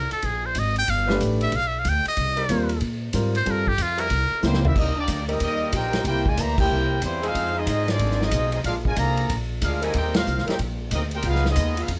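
Big band swing with a swinging, dramatic mood, heard as a short cut from a longer piece. A buzzy, thin trumpet in a metal mute carries the opening melody as a breathy solo with scooped notes and light vibrato, over woody pizzicato upright bass on gut strings and a vintage kit with dark cymbals and a punchy kick in a small, pumping room. At 1.1 seconds a concert grand piano adds accompaniment with deep bass, while a mellow saxophone section lays down sustained chords with vibrato and a smooth top. A drum fill at 4.4 seconds leads into a minor-key passage where a brilliant, tight trumpet section takes the melody up front and a dark, distant trombone section plays a second line. Band accents punctuate the swing, the saxophones return briefly near 10 seconds, and the dry sound keeps the thumpy bass and trumpets close and present.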